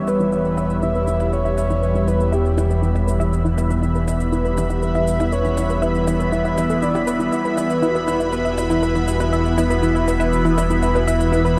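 Ambient, sequencer-driven space music in E minor, this cosmic, expansive excerpt moves at 120 BPM in a straight 4/4 and rests on a single E minor chord throughout. Up front, a lush, detuned unison pad holds bright sustained chords through chorus and phaser, while a fat, saturated, wave-folded analog bass sits on a low E with a filter sweep. A breathy, flute-like synth lead carries the melody between G4 and E5 with vibrato, subtle chorus and tape echo, and at 7.3 seconds it gives way to a mellow vibraphone played with soft mallets, its metallic, ringing arpeggios set in the background with tape echo. Underneath, a round analog pluck repeats a riff from E4 to E5 with chorus and tape echo, and electronic cabasa and percussion blips fade in, also treated with tape echo. From 2.8 seconds a very quiet, airy, wind-like tuned noise texture hovers on B4. The dark production is bathed in a huge, wet reverb with an 8.1-second tail, and the passage is cut from a longer piece.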